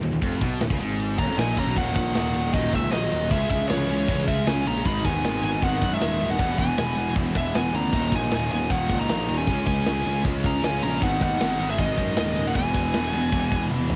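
Recorded at home on cassette in a small room, this relentless, dark heavy metal excerpt sets a scooped, double-tracked guitar, a very quiet sludgy guitar and a tight, bright guitar grinding out the riff in the background over a growly fuzz bass and an up-front acoustic kit with a tight kick and medium-tuned snare that fills at 1.6 s, while from 1.2 s a high-gain lead guitar carries the melody in front and a faint second lead traces a lower line beneath it.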